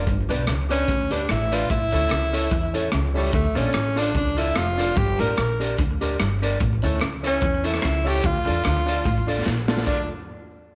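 A lightly swung ska beat drives this short, mischievous and energetic clip, with a raw, gritty garage drum kit up front pumping in a small room alongside a woody pizzicato upright bass and very quiet crisp group handclaps entering at 0.5 seconds. A clean, fingered electric guitar with slapback echo and mellow upright piano stabs fill in the accompaniment, while a bright, twangy, slightly broken-up electric guitar plays a low riff in the background through lush chorus and slapback echo. Leading from 0.7 seconds, a breathy tenor saxophone carries the melody with light vibrato and its own slapback echo over a moderate spring reverb, and a drum fill closes the clip at 9.5 seconds.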